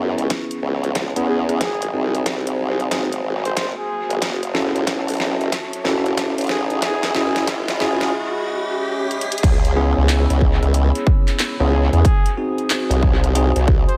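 Glitch hop in C# minor at 92 BPM, this playful, funky excerpt swings its sixteenths in 4/4 and moves through C#m7, G#7, F#m7 and Emaj7 in an echo-heavy mix with light reverb and a digital ambience. A punchy, overdriven electronic kick sits up front beside a wobbling formant-sweep bass built from sawtooth and sine tones, compressed and thickened with chorus and overdrive. A dubstep kit with a deep snare, handclaps, hi-hat, rim click and crash cymbal adds grit and dub echo, while a bell-like tine electric piano plays bright stabs coloured by vintage 12-bit sampler crunch, sidechain pumping and a filter sweep through the build-up. Behind them, a moody detuned analog pad holds sustained chords in the background, with a moving notch and chorus, and a mellow trumpet with vibrato enters at 1.3 seconds to carry a soloing melody through dub echo. A riser and swell lift the build, a break arrives at 8.1 seconds, and the drop lands at 9.4 seconds as the chords return to C#m7.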